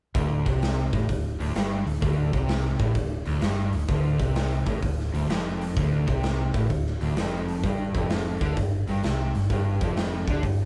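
Bass and drums kick off this driving, swaggering blues rock and southern rock cut together, with a dark, round, foam-muted bass sitting in the background under a punchy kick, medium-tuned snare and hi-hat recorded in a bright stone room. An overdriven, double-tracked semi-hollow guitar joins at 0.2 s, playing a picked, up-front riff on a D5 chord before shifting to G5 at 7.6 s, with a swung 4/4 feel throughout. The trio sounds like it is playing live in one room with moderate studio ambience, and this fragment is cut from a longer piece.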